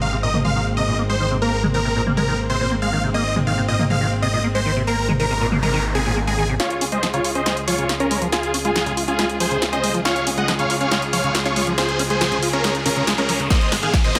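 Uplifting trance with a soaring, euphoric mood, cut from a longer piece, where a huge, bright detuned supersaw lead carries the melody over rich, smooth bowed string chords and a squelchy, resonant acid bass arpeggio whose filter sweeps through the opening, all breathing with sidechain pumping, while a fat, nasal analog bass holds the low end until 6.6 seconds, when a punchy, overdriven analog drum machine fill drives the build-up, a very quiet noise sweep and riser, which entered at 5.2 seconds, swells underneath, and an up-front overdriven electronic kick punches in at 13.5 seconds, all in a light reverb.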